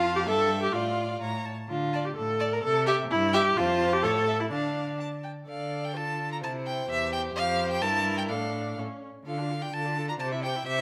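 Set in a moderate recital hall reverb, this stormy, urgent classical-period passage for string quartet, cut from a longer piece in a straight 2/4, places a focused, vibrato-rich first violin on the melody above a dark second violin sliding expressively through its line, while an up-front viola carries the accompaniment and a smooth, even cello anchors the bass, with the opening section returning at 5.5 seconds.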